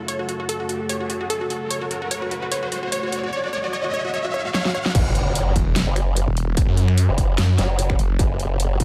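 A distorted, compressed low end dominates this chaotic, aggressive heavy wobble dubstep excerpt, set in F# minor at 148 BPM in a swung half-time feel under light reverb. The opening build-up rests on an F#m chord from an evolving, morphing wavetable pad with chorus, built-in reverb and sidechain pumping, while an electronic riser climbs and a lush, bright unison pluck with tape echo carries the melody up front. A layered, tape-colored dubstep kit of huge snare, metallic hats, finger snaps and crash cymbal plays throughout and closes the build with a drum fill. At the drop at 4.9 seconds the harmony falls away as an impact hits, a distorted electronic kick enters and a detuned formant-sweep wobble bass wobbles on F#1 with chorus and overdrive. From 5.6 seconds a snarling, growling saw bass with a moving notch, distortion and overdrive joins, standing loudest in the mix through the end of the cut.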